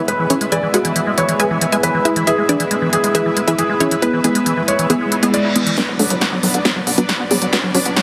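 A straight 4/4 pulse drives this short, euphoric slice of uplifting trance, with a big-room dance kit up front supplying a punchy snare and crisp, pumping hats. A lush, full-bodied unison pluck carries the melody through dub echo while a filter sweep moves across it, and a detuned supersaw pad holds airy sustained chords beneath, roughened by vintage 12-bit sampler grit and swept by its own filter. A squelchy, resonant acid bass line arpeggiates through chorus and echo, and a soft, felt-muted upright piano adds an intimate second line with audible action noise until 5.8 seconds. A very quiet reverse cymbal and riser creep in at 5.2 seconds, and at 5.8 seconds the harmony shifts from E to Bm as a build-up and drum fill begin, joined by a dry, overdriven electronic kick in the background and a faint, funky analog bass pluck. The whole mix sits in a huge ambient reverb yet sounds heavily compressed, with several parts breathing to the sidechain pump.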